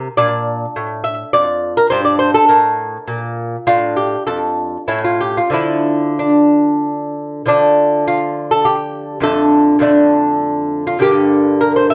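A dry, close recording in a 1970s studio style, with light reverb, frames a solo lute placed up front, its bright nylon and double strings, some doubled at the octave, carrying a touch of slapback echo. This classical, baroque-style dance in three moves with a grave yet flowing mood and a rubato feel, the delicate fingerpicked lines passing through chords such as Bb, Gmadd9 and Dm/A. A second section begins at 7.5 seconds and settles from Dm/F onto Gm before the passage, cut from a longer piece, breaks off at 11.9 seconds.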